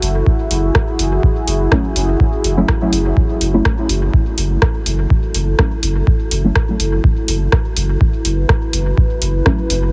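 A hazy, meditative dub techno excerpt in F# minor at 124 BPM opens with a clean, smooth sine sub bass, a dark, detuned sawtooth pad holding a sustained F#m7 with chorus and sidechain pumping, and an overdriven deep house kit of hi-hat and rim click trailing dub echo. An up-front, tape-warm analog kick drum enters at 0.3 s to anchor them, and from 1.7 s soft, warbling vintage chord stabs arrive with phaser, filter sweep and echo, all under light reverb and a heavily compressed radio-like sound.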